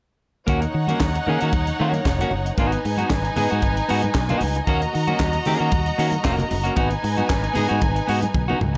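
This short disco excerpt opens at 0.5 seconds with the full band together, a driving, danceable groove at 114 BPM in 4/4 with a straight feel, set in Eb minor and moving between Ebm7 and Abm7. A tight funk drum kit, dry and natural with a high-tuned snare and a tight kick, lays down the beat with hi-hat, handclaps and toms, while a fingered electric bass, punchy and amped, sits slightly forward in the mix. A clean, dark electric guitar provides picked accompaniment in a narrow middle range, and a lush symphonic violin section carries the second line up front, bowed and smooth with vibrato. Ringing, medium-tuned congas played with soft hands sit in the background, giving a small-room sheen to the percussion. A drum fill arrives at 8.3 seconds, and the whole is bathed in light room reverb before the cut at 8.8 seconds.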